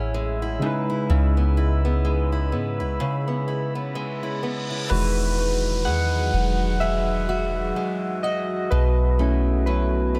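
Moody and late-night, this contemporary R&B excerpt drifts at a slow, swung pace as soft, round electric-piano-like synth keys, detuned and wave-folded with chorus and dub echo, provide accompaniment over a deep, dark ambient pad and a boxy acoustic archtop guitar picking arpeggios with audible finger squeak. A soft 808-style bass sits up front with a round, sine-like tone, while a break arrives at 3.0 seconds and an electronic reverse cymbal and downlifter enter at 4.1 seconds. From 4.9 seconds the synth keys take a mellow solo as the harmony moves to Emaj9, all in a dry, echo-heavy mix.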